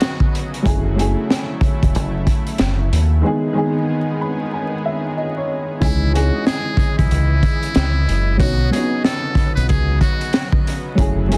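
A swung 4/4 groove at 93 BPM drives this tough, moody boom-bap hip-hop cut in C# minor, built on a crunchy breakbeat kit with a punchy kick, high-tuned snare and hi-hat, its saturated, gritty tone rolled off on top and sitting up front in a small room. A deep dub fingered electric bass joins at 0.7 seconds, round and dark, played direct and amped and pushed forward in the mix alongside the drums. Underneath, a dark upright piano carries the accompaniment with a woody, boxy, slightly detuned character, short sustain and audible action noise, colored by cassette tape. A lush unison pad holds sustained chords through the passage, thick and warbling with a vintage sawtooth shimmer, slow attack and long release under chorus. After a brief muted blip at the very start, a close-miked trumpet with a metal mute returns at 5.8 seconds to take a jazz-style solo melody, buzzy and thin with scooped notes trailed by tape echo, stepping away at 10.5 seconds. 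The dense, heavily limited master is dusted with vinyl crackle, and the chords move from Badd9 through F#m7 and G#m to C#madd9 before returning to Badd9 in this short cut from a longer piece.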